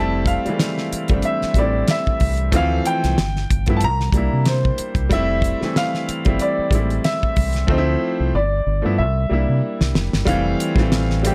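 A lightly swung 16th-note groove at 93 BPM in 4/4 sets this relaxed neo-soul and R&B passage in F major, with a dry, damped 70s drum kit entering at 0.3 s, its fat snare and tight kick sitting up front, and a fill from 7.7 s. A round, punchy fingered electric bass with a dark, direct tone anchors the low end, while a brilliant, woody upright piano comps through lush Fmaj9, Dm9, G13 and C9 changes, bathed in plate reverb. Above it, an open, clear-toned baby grand carries the melody with long sustain and its own plate reverb, and the harmony resolves to Fmaj7 at 10.3 s in this fragment of a longer piece.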